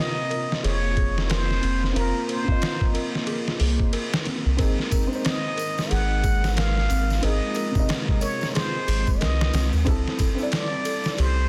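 A breathy, plunger-muted trumpet carries the melody over gritty, pitched-down sampler drums, a round dub sub bass, a felt-muted upright piano with tremolo and audible action noise, phased string-machine cellos, delicate celesta arpeggios and a distant tambourine from 4.6 s, giving this dark, cinematic 91 BPM trip hop excerpt its swung, smoky pull through Fsus4, Ab and C6.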